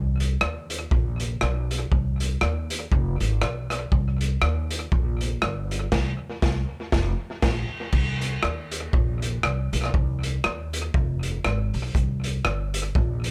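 Ska with an energetic, mischievous swing, this short cut pairs a woody, growly pizzicato upright bass with a raw garage drum kit whose boomy kick, gritty saturation, pumping small-room sound and tape echo sit up front in a dry mix, the band hitting an accent from 5.9 to 7.9 seconds before the second section begins.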